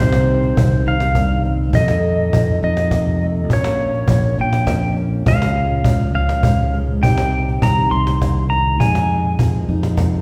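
Heard from further back in a reverberant recital hall, this wistful, reflective acoustic folk piece moves at 68 BPM in a straight 6/8, with a clean, compressed pedal steel guitar sitting up front to carry the melody through slide and volume swells, a fingerpicked plugged-in steel-string acoustic guitar with fresh strings and audible finger squeak supplying warm accompaniment, a growly, punchy fingered electric bass underneath, and a snappy, saturated cajon played with soft hands.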